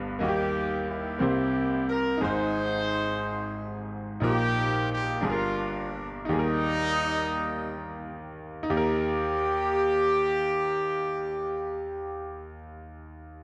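Gospel in a reverent, hopeful 6/8, taken from a longer piece, where a brilliant concert grand piano with deep bass supplies accompaniment while a jazz-style horn section carries the melody up front, coloured by slapback echo and plate reverb. The ensemble slows between 4.2 and 8.7 seconds before moving into a new section. A dark, warm production and a moderate large-studio reverb give the recording a rich, natural sense of space.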